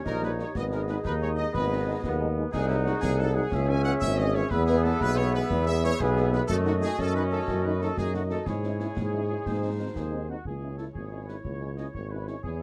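A 6/8 pulse at 121 dotted-quarter beats per minute drives this military-style march for wind band, a resolute, stern passage in C# minor cut from a longer piece. The clear trumpet section carries the melody with light vibrato and a close-miked presence, while the warm woodwind section adds a second line. Up front, a clear tuba anchors the bass, and a distant, roomy French horn section adds dark accompaniment in the background. The trombone section holds sustained chords with a vintage, tight character until about 10.2 seconds, and concert snare drum, concert bass drum and clash cymbals with dark cymbals sit back in a small room. The harmony moves from D#7 and G#m through C#m, E and a D#dim/F# before settling on C#m as a new section begins at 10.5 seconds, all framed by light reverb in a dark production.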